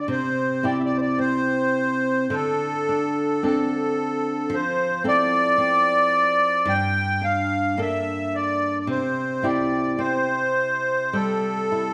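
The rhythm floats freely in a rubato 4/4, letting each phrase breathe at its own pace in this haunting, mournful Celtic slow air. An up-front accordion carries the melody with a reedy, sweet yet dark voice, its light tremolo tuning adding a gentle shimmer to the smooth line. Beneath it, a fingerpicked flamenco guitar provides the accompaniment, its fresh strings giving a warm, acoustic ring that sits close to the listener. Both instruments play together from 0.0 seconds until the fragment is cut off at 11.9 seconds, moving through C, D5, Fmaj7, Gmadd9 and back to C. The pair sounds as if captured in a church or concert hall, where a wet recital-hall reverb lets every note linger and deepens the sorrowful atmosphere.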